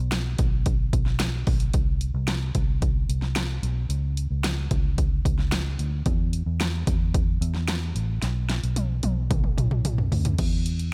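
A dark, round, foam-muted vintage electric bass sits up front in this earnest, driving pop excerpt at 111 BPM in 4/4, joined from 0.1 seconds by a layered electronic deep house kit with a punchy kick and fat snare, set in a dry space and breaking into a drum fill from 8.2 to 10.4 seconds.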